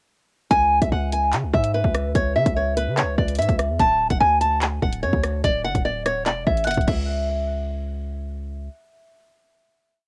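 A dry home cassette recording, this short, cold and tense drill piece sets a small, fingerpicked nylon-string guitar loop up front over a half-time electronic beat of hard-clipped kick, skipping hats with fast rolls, handclaps, rim clicks and crash, while a punchy, heavy 808-style bass holds long sub-bass notes with pitch slides that follow the kick, the hook running until 7.1 s before a final hit closes the piece at 10.1 s.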